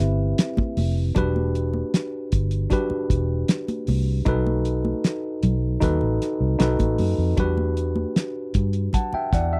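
Lush 1970s-style soul at 77 BPM in E minor, smooth and bittersweet, where a worn, slightly out-of-tune tine electric piano moves through a rootless Am9, then Em9 and B7 chords over a dark, foam-muted fingered bass and a cloth-damped, thuddy drum kit with a fat snare, while a ringing vibraphone with slow motor vibrato sounds a lone E5 in the first 0.9 seconds and bright, high-tuned congas sit in the background from 0.4 seconds, all in a dry, close studio sound.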